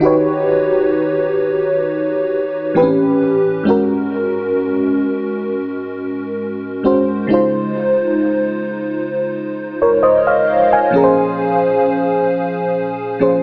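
Moody and late-night, this slow R&B excerpt at 66 BPM features a lone FM electric piano with a soft pad layer, its lush, warbling, detuned tone sitting up front with chorus and tape echo across a range from Ab2 to Ab5. The harmony drifts from Eb7alt through A9 and Ab7sus4 to Dbmaj7 and Bbm9, with a light 16th-note swing. A moderate plate reverb and an AM radio sound give the whole piece a dreamy, vintage cast.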